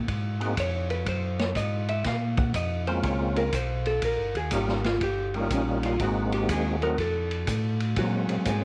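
Swinging and greasy, this short soul jazz organ trio cut rides a lilting swung groove over a chord cycle built from dominant and minor sevenths. A mellow, round tonewheel organ carries the bass line from the opening at 0.0 seconds, its clean, dark tone turning slowly through a rotary speaker with a touch of key click. A vintage acoustic drum kit with dark cymbals, a punchy kick and a medium-tuned snare joins on hi-hat, ride and snare. A second, fatter tonewheel organ takes the melody from 0.4 seconds, lightly overdriven and percussive, with chorus vibrato and its own slow rotary swirl. A picked, compressed hollow-body electric jazz guitar comes in at 0.6 seconds with a dusky, clean voice and holds the solo spotlight through the passage. Moderate studio reverb surrounds the trio, and a worn cassette-tape quality adds warbly pitch drift that gives the sound an aged patina.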